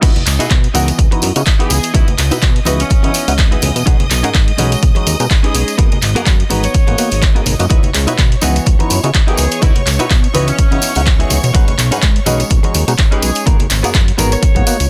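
A punchy, up-front electronic kick drives this sensual, nostalgic filtered disco house excerpt with a swung 16th feel, joined by a fat, detuned sawtooth bass with tube saturation, a stringy phased clav, a clean direct electric guitar riff with harmonic tremolo, distant lush strings, an analog drum machine's handclaps, hi-hat and crash, and bright compressed tambourine and congas, while a tight, smooth-topped horn section brings in the melody with delay from 1.6 seconds, with most parts pumping and low-pass filtered in a dry, dense and heavily limited mix.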